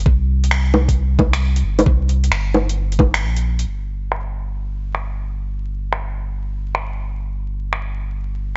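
A knocking, overdriven electronic kick sits up front in this rainy, melancholic future garage excerpt, which moves at 133 BPM in 4/4 with a 66% swing on the sixteenths. The kick drops out at 3.1 seconds, and a brief break follows before the second section begins at 3.7 seconds. A layered garage kit of bongos, finger snaps and metallic hi-hats, also overdriven and close, runs until 7.8 seconds, with low-pass filters dulling the hats, snare and percussion. Underneath, a deep, round sine sub bass with a fast attack and mellow sustain holds between G1 and C2 for the whole piece, pumping under sidechain. The dry recording carries a layer of vinyl crackle, and its top end is rolled off above 7.8 kHz, giving it a muffled character.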